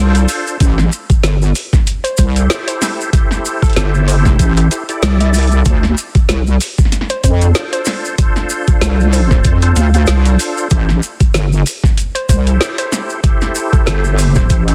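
A heavy, detuned square-wave wobble bass sits up front in this playful, funky glitch hop excerpt at 95 BPM in D minor with a swung 16th feel, driven by a gritty, pitched-down electronic kick. An electronic kit adds a woody, softly clipped snare and metallic hi-hats, grainy maracas rustle close by, and a reedy tonewheel organ with key click, slow rotary speaker, sidechain pumping and tape echo plays stabs over Dm7 and Am7 chords. From 2.0 seconds a mellow, wave-folded pluck carries the melody with chorus and tape echo, all within a dense, heavily limited master dusted with vinyl crackle.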